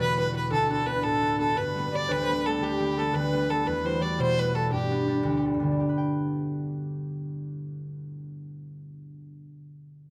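Celtic folk jig in 6/8 at 114 BPM in G major, lively and bright, cut from a longer piece. A smooth, rich fiddle with light vibrato and plate reverb carries the melody up front, while a pure wooden flute with a crisp attack sits in the background on a second line, both stopping at 5.4 seconds. A ringing, fingerpicked concert harp plays accompaniment up front until 9.5 seconds, captured with close, detailed microphones and light reverb.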